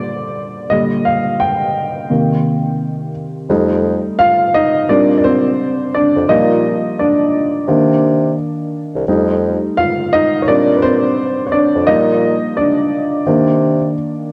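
Hazy and nostalgic, this lo-fi hip hop excerpt opens with a dark, mellow upright piano alone, its woody, intimate tone carrying audible action noise and a vintage cassette-tape grain as it moves through jazz chords over a gently swung 4/4 feel. At 3.5 seconds a dark bassoon enters up front in the low register, playing a bass line with a soft attack, light vibrato and a classical bearing. Both parts sit in a dreamy mix soaked in lush hall reverb, and the clip ends at 14.3 seconds, cut from a longer piece.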